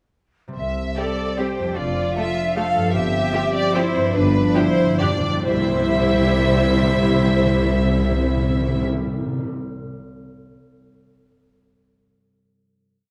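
Festive and sweeping, this short classical ballroom waltz unfolds with rubato and slows from 2.4 s as a timpani fill leads to a final chord at 5.5 s, the clear, intense violin section carrying the melody over a warm violin line doubled by a mellow, hollow flute ensemble, rich viola after-beat chords, a rich chamber cello counter-melody, dark sustained French horn chords, an even double bass section on the beats, ringing rolled harp arpeggios and round soft-mallet timpani, all set in a wet concert hall reverb.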